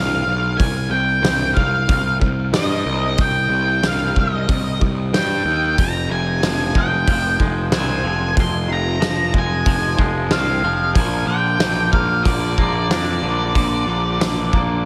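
A straight 4/4 pulse drives this dark, cathartic slice of quiet-loud alternative rock, with a loose indie drum kit entering at 0.6 s, its punchy kick and medium-tuned snare sounding roomy and softened at the top. A growly, overdriven fuzz bass anchors the low end while a dark octave-fuzz lead guitar carries the melody through distortion and digital delay. At 5.8 s a twangy, clean, compressed guitar joins with bright arpeggios bathed in lush chorus, slapback echo and delay, and the whole mix sits in a big arena sound with concert hall reverb.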